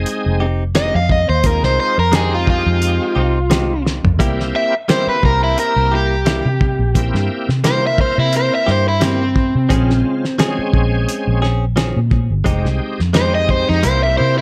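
A dry, close-sounding mix carries this mournful, brooding cut from a longer soul blues piece in F minor, moving at 87 BPM in 4/4 with a lightly swung sixteenth feel over Fm9, C7 and Bbm9 chords. Up front, an overdriven semi-hollow guitar takes the melody as a picked, hollow-toned solo bathed in spring reverb, while a dark, round, foam-muted fingered bass sits punchy beside it. Behind them, a bright, shouting tonewheel organ with chorus vibrato and slow rotary speaker fills out the chords; a twangy, compressed clean guitar adds stabs with warbly pitch drift and tape echo; and a muffled, gritty small-room drum kit with a fat snare and tight kick plays a short fill at 3.9 seconds.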